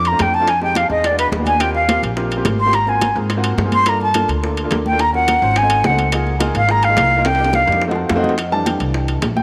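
A breathy, soft-attack jazz flute solos up front in this danceable, sophisticated Afro-Cuban jazz excerpt at a brisk 213 BPM, backed by a clear grand piano with audible action noise that adds a fill and then takes a solo at 8.4 s, a woody pizzicato upright bass, high-tuned congas played with hard hands, round low-tuned bongos and ringing metal-shell timbales, with a drum fill from 7.3 s and a moderate plate reverb over the mix.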